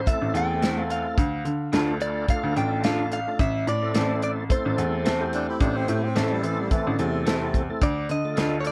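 The recording sounds dry, with little reverb, in this short cut from a longer straight-eighth soul blues at 108 BPM in A minor, smoky and soulful in mood. A tight, up-front acoustic drum kit with a medium-tuned snare and a rolled-off top plays hi-hat, kick and snare, while a brilliant baby grand piano carries the bass line in its low register. A clean, compressed electric guitar recorded direct picks out the melody up high, and a full tonewheel organ with light overdrive, chorus vibrato and a slow rotary speaker fills in the accompaniment. From 0.6 seconds, a twangy, slightly broken-up guitar through a small old amp adds lo-fi stabs. The chords move from A minor to D minor, back to A minor and on to D minor again, and over the return to A minor a breathy, whispered tenor saxophone with vibrato slips in a soft second line from 5.3 to 7.7 seconds.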